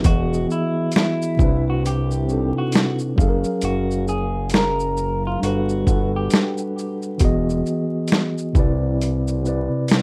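A rough home-demo sound with light reverb and a bed of vinyl crackle frames this nostalgic, cosy lo-fi hip hop excerpt, which moves at a relaxed 67 BPM in 4/4 with a swung sixteenth-note feel. Up front, a boom bap sampler-style drum kit sounds gritty, compressed and pitched down, with a thumpy kick, a medium-tuned snare, hi-hat and shaker carrying a tape-warm character. A mellow, clean tine electric piano, heard as if through built-in speakers, supplies the accompaniment across lush major-ninth chords that drift from Emaj9 through Cmaj9, F#maj9 and Gmaj9 before returning. Beneath it, a fat, nasal analog bass with a detuned, saturated sawtooth tone, fast attack and sustained character sits low in the mix's foreground. Quieter and set back, an electric guitar through a small old amp plays a fingered melody with a dark, slightly broken-up, lo-fi tone, bathed in spring reverb and analog delay, entering at 0.1 seconds and falling away at 6.6 seconds while the keys and drums carry on to the close.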